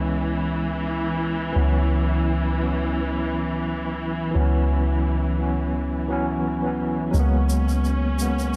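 A barky, clean tine electric piano with tremolo, tape echo and a filter sweep colours this brooding, hypnotic trip hop excerpt at 86 BPM with a swung 16th feel, set over lush, bowed symphonic strings with vibrato and portamento and a deep, round 808-style bass on C#2, moving from C#m7 to F#7sus4/C# until a close acoustic tube shaker enters at 7.1 s on G#m9/C#, within a dark production with light small-room reverb.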